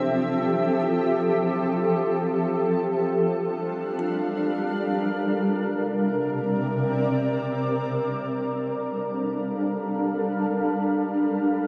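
Bathed in a wet cathedral reverb with a five-second tail, this short ambient passage, cut from a longer piece, sounds as if it hangs in a vast, echoing space. In free time and G dorian, tuned to A4 = 443 Hz, it carries a spacious, serene mood. Up front, a shimmering pad holds sustained chords across a broad range from C3 to F5, its detuned, granular tone carrying an ethereal octave-up shimmer, slow attacks, long releases, chorus and its own reverb as it evolves. Beneath it, a very quiet kalimba picks out warm, woody arpeggios between D4 and F4, its thumb-plucked notes ringing dark and smooth until it stops at 5.4 seconds. The harmony drifts from Fmaj7 through Gm7 to C7, then settles back on Gm7 at 7.4 seconds, where the pad carries on alone to the close at 11.7 seconds.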